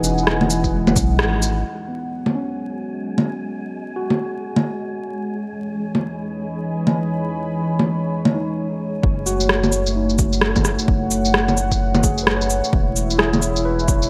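A rainy, melancholic future garage fragment cut from a longer piece, set in 4/4 with a swung sixteenth-note feel. A dark, detuned analog pad sits up front throughout, holding sustained chords that move from Emaj7 to F#m at 9.0 seconds, its chorus and sidechain pumping giving the harmony a breathing pulse. An overdriven, gritty tine electric piano played through a combo amp adds accompaniment with digital delay, pausing briefly before returning, while a soft, round dub sub bass and a punchy, layered electronic kick both drop away after the opening and come back together at 9.0 seconds. Electronic cabasa, shaker, rim click and bongos, re-recorded in a small room and treated with gated reverb, run up front the whole way, and a band accent lands at 1.2 seconds. From 2.4 seconds an airy, breathy wind-like noise texture drifts in beneath everything with its own built-in reverb, all of it set in a lush hall and a bright 1980s-style digital production flecked with vinyl crackle.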